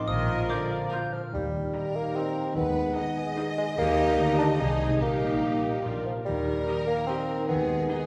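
In a straight 3/4 lilt, this playful, magical film cue opens with a brief woody xylophone figure and fleeting touches from bright clarinet, clear cor anglais and hollow flute, all over an up-front bassoon and ringing, thumb-plucked harp arpeggios. From 0.1 s a very quiet chamber violin line, distant dark French horn chords, and bowed cellos with portamento beside chamber double basses on the bass are already sounding; at 0.5 s a lush, close symphonic violin section takes up the melody, joined by smooth violas in the background. A wet scoring-stage reverb sets the orchestra further back in the room, and the passage is cut from a longer piece.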